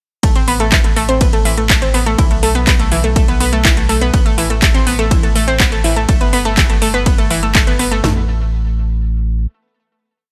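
Driving yet dreamy, this short progressive house piece in A minor runs at 123 BPM in a straight 4/4, opening directly on a drop at 0.2 seconds. An up-front analog sawtooth pluck carries the piece with a bright, round, vintage arpeggio, a repeating six-step sequence that drifts against the bar, colored by chorus warble, a filter sweep, digital delay and sidechain pumping. Beneath it a deep, thick triangle-wave sub bass holds sustained root notes with a fast attack, its tube saturation and pumping giving weight to the Am, B7sus4, Am and G progression. Two layered, overdriven electronic drum kits, re-recorded in a large room, drive the groove: one supplies a punchy four-on-the-floor kick, a cracking snare and floor toms, while the other adds metallic closed and open hats, ride and claps on a programmed backbeat. The drop ends at 8.0 seconds, and the sub bass sustains a final note until 9.5 seconds while the drums and pluck trail off just after 8 seconds, all set in a digital ambience.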